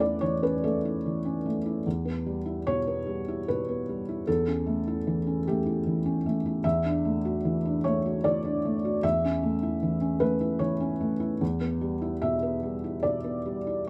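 A felt-muted upright piano opens alone and carries the whole 13.9-second passage, its thick felt giving the notes a dark, mellow softness while the noise of the action stays audible up close. This is neoclassical minimalist piano in a melancholic, intimate mood, moving in an unhurried, rubato three-beat lilt. The harmony circles gently between A/E and Em, with a Dadd9/E arriving at 6.6 seconds before the cycle returns, all resting over a low E. The playing spans from E2 up to E5, so the deep bass and the upper register sit together in a single, up-front voice. A light reverb surrounds the instrument, and the vintage, smooth character of the piano makes the moment feel private, as though lifted from a longer piece mid-thought.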